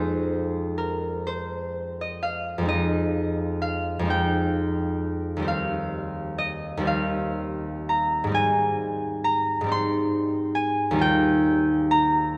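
A wet church reverb, with a 3.2-second decay, surrounds this short passage cut from a longer classical piece for solo concert harp. The harp sits up front, its fingerpicked strings acoustic and ringing, spanning a range from Eb2 up to C6. The mood is gentle and mysterious, moving at a slow 39-46 BPM in dotted quarters within a 6/8 metre, and the rubato feel lets the pulse breathe. The harmony drifts from Fm7 through Abmaj7/F and Eb69 to Abmaj9, arriving on Ebadd9 at 11.0 seconds. The instrument is tuned to A4 = 436 Hz, and the harp plays alone from 0.0 to 12.4 seconds.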